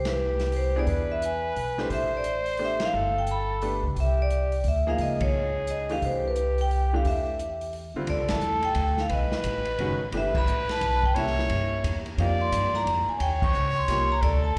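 A band accent opens this excerpt from a longer small-group swing and bop jazz piece at a brisk 175 BPM in 3/4. The dark, ringing vibraphone, played with medium hard mallets and its motor off, carries the melody in C major, with a trumpet with light vibrato on a second line and a woody, thumpy pizzicato upright bass up front. A dark, smooth drum kit with a boomy kick enters at 0.1 seconds, and a brilliant upright piano with audible action noise adds accompaniment from 0.8 seconds, all in a sophisticated, warm mood, heard as a live gig through the venue's PA with recital hall reverb and slapback echo on the vibraphone, trumpet and piano.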